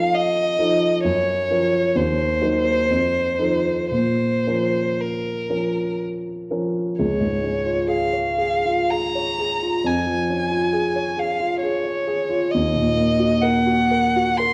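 A worn, warbling cassette sound with wavering pitch drift colors this short romantic duo for violin and grand piano, set in a wet recital hall whose reverb lingers for about 1.4 seconds. The mood is elegiac and yearning, moving at a slow, rubato pace of roughly 55 to 69 BPM in 3/4 time. A single bowed violin carries the melody up front, its tone rich and focused with vibrato, reaching from Bb4 up to C6. The grand piano accompanies from Db2 to Db5, sounding present and polished, with short sustain. The opening section dwells in Bb minor through F7 and Gbmaj7 harmonies, then at 7.0 seconds the music brightens into Db major before turning toward Eb minor near the close of this fragment from a longer piece.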